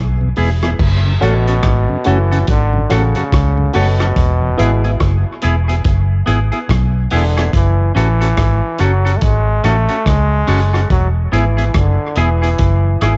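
A swung sixteenth-note feel at 71 BPM in 4/4 sets this hypnotic, spacious dub reggae in F# minor, a fragment taken from a longer piece that moves between E and F#m chords. A vintage drum kit with a punchy kick, rim click, hi-hat, crash cymbal and dark, muffled cymbals sits beside an up-front, foam-muted electric bass that stays round and low throughout. A clean, twangy electric guitar with spring reverb and dub echo enters almost at once, while a mellow tonewheel organ with key click and a slow rotary speaker hovers in the background until about 4.5 seconds. From 1.2 seconds a clear trombone carries the melody with light vibrato and scooped notes, its phrases trailing into dub echo, as a woody, slightly detuned upright piano adds intimate stabs with audible action noise until 4.8 seconds. The home cassette recording has little reverb and a rolled-off, lo-fi top end, which gives the whole mix a close-up character.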